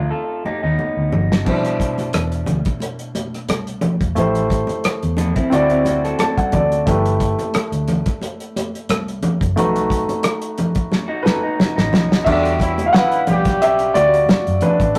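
Bittersweet and smooth, this lush 1970s-style soul groove in E minor moves at 89 BPM with a gentle swing, as an up-front grand piano carries the harmony from B7alt through Cmaj9 and D9 to Em9 over a dark, round, foam-muted electric bass, high-tuned ringing congas and a cloth-damped, thuddy drum kit with dark cymbals and a tight kick, while a slightly broken-up, lo-fi electric guitar riff with spring reverb appears until 6.8 seconds and briefly returns around 11 seconds, and a distant, punchy horn section with vibrato and octave doubling stabs in at 12.3 seconds just as the piano takes a solo, all captured in a rough rehearsal-room sound with saturation.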